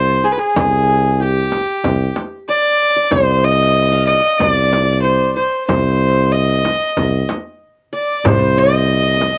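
Arabic maqam ensemble music in C minor moves at 94 BPM in a straight 4/4, with a hypnotic, melancholic mood, cut from a longer piece. A single bowed violin carries the melody up front, its earthy, biting tone softened by a smooth top and light vibrato, and colored by the grain of cassette tape. Alongside it a very quiet qanun, played with fingerpicks on triple strings, traces a bright-edged second line, while a close-miked tuba holds the bass on a low C with vibrato and scooped notes in a jazz style, sitting up front as well. A deep, large frame drum with a vintage, band-limited sound enters at 0.6 seconds, and near the close, at 8.3 seconds, a clay-shelled darbuka with a natural skin joins from the background, close and dry. The whole ensemble has the intimate feel of a home recording on cassette, touched by light reverb.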